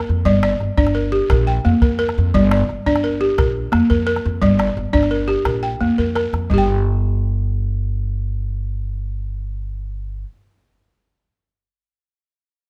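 A buzzing balafon played with rubber mallets opens this reflective, flowing West African piece at 0.0 seconds, its close, full arpeggios sitting up front alongside a deep, dry calabash. A dark, thumpy pizzicato upright bass with gut strings follows immediately, underpinning the alternating G minor and B-flat harmony in a straight 12/8 at 115 BPM. A drum fill at 5.8 seconds leads into a second section where the chords fall away and the calabash stops at 6.7 seconds, leaving balafon and bass in a warm, lightly reverberant mix cut from a longer piece.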